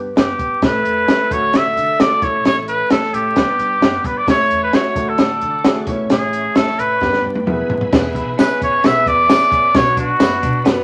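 A straight, danceable 4/4 groove drives this warm fragment of uptempo 1960s-style soul: a clear, vintage trumpet with light vibrato and scooped notes sings the melody up front over a punchy, dark cocktail drum kit, an intimate upright piano with audible action noise, a woody pizzicato upright bass and a very quiet, reedy tonewheel organ with key click and rotary speaker, set in wet studio reverb with vinyl crackle, until a drum fill at 7.0 seconds ushers in a jingly tambourine at 7.9 seconds and a twangy clean electric guitar riff at 8.1 seconds.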